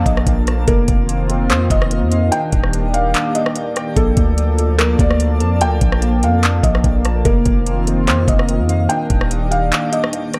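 Atmospheric cloud-rap hip hop at 146 BPM in a half-time feel, this dreamy, blissful excerpt in Bb major drifts through Bbmaj7, F7sus4 and Ebmaj7 as a soft, felt-muted upright piano carries the melody through a low-pass filter and delay, its action noise audible and intimate. A moody, detuned analog pad pumps under sidechain with chorus, while warbling, nostalgic lo-fi synth keys arpeggiate in the background and a twinkling granular texture adds octave-up shimmer. Up front, a deep, sine-like 808-style bass sustains beneath a tape-warm electronic R&B kit of knocking kick, metallic hats, handclaps and rim click, with the kick dropping out at 3.1 and 9.7 seconds, all bathed in a reverb-soaked plate.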